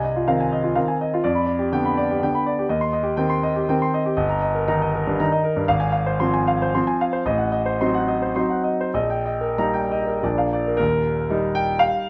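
A clear, open concert grand piano sits up front with deep bass in a moderately reverberant large studio, playing a proud, rustic romantic triple-time dance with dotted rhythms and rubato between 90 and 132 BPM, moving from C minor into Eb major at 4.2 s and settling on an Eb chord at 10.8 s in this 12-second fragment cut from a longer piece.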